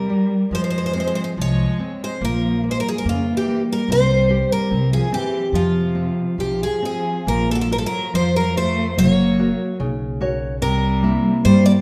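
A fado-style ballad cut from a longer piece, mournful and passionate, moving at a rubato 72 BPM in 2/4 and shifting from F harmonic minor to Bb harmonic minor at 7.3 s. A shimmering, octave-doubled twelve-string guitar carries the picked melody up front, while a dark bowed cello sings a second line with vibrato and portamento, and a full-bodied nylon-string guitar fingerpicks the accompaniment with audible finger squeak. A woody pizzicato upright bass enters at 0.5 s, and the whole ensemble sits in a wet recital hall reverb.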